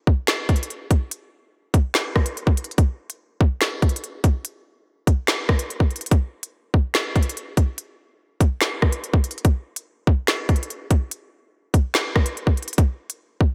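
Light reverb frames this dark, cold hip hop excerpt at 144 BPM in 4/4 with a half-time feel. A single up-front electronic drill drum kit carries the whole passage from 0.1 to 13.5 seconds, pairing a hard-clipped kick with a woody snare, crisp hi-hats, finger snaps and rim clicks. The result is a produced beat cut from a longer piece.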